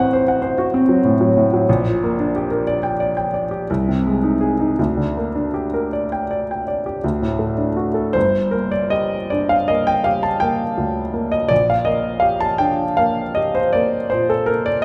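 A clear, intimate grand piano plays alone and up front, its action noise audible and its short sustain carried by a wet recital-hall reverb in this romantic nocturne, cut from a longer piece. In G minor and 9/8, with a rubato pulse of about 51-68 BPM in dotted quarters, the music feels yearning and mournful, spanning G1 to A5 as it moves through a diminished chord and a major chord before settling on D. A new section begins at 8.1 seconds on G minor.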